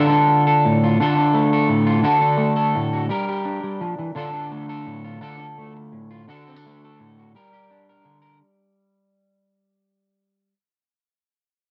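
A twangy, slightly broken-up electric guitar, fingered and up front with a subtle chorus, plays alone through this danceable, warm highlife fragment in a straight 12/8, cut from a longer piece, sitting in moderate spring reverb with the character of a home cassette recording as it fades out across the first 8.4 seconds.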